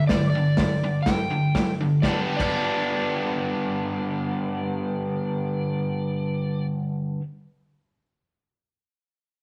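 A biting, double-tracked overdriven guitar riff and a dark, fingered slide guitar melody open this raw, rowdy garage rock fragment together, joined up front by a crunchy, saturated breakbeat drum kit with a tight kick and a rolled-off top that drops out at 2.5 s, the whole performance carrying the rough feel of a rehearsal room soaked in stone-room reverb.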